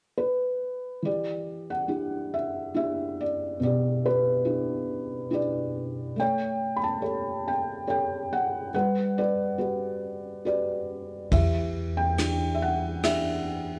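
A felt-muted upright piano opens at 0.2 s with a mellow, intimate melody, sitting up front with a dark, vintage tone over Em7, A7 and Gmaj7 chords in this reflective, heartbroken acoustic folk-pop ballad in E dorian, moving at 70 BPM in a straight 3/4 and tuned to A4 = 444 Hz. At 11.3 s a woody pizzicato upright bass holds a low E while a soft brush drum kit with a punchy kick, ride cymbal and rim clicks joins from a small room. Light reverb and a gently rounded top end frame this fragment of a longer piece.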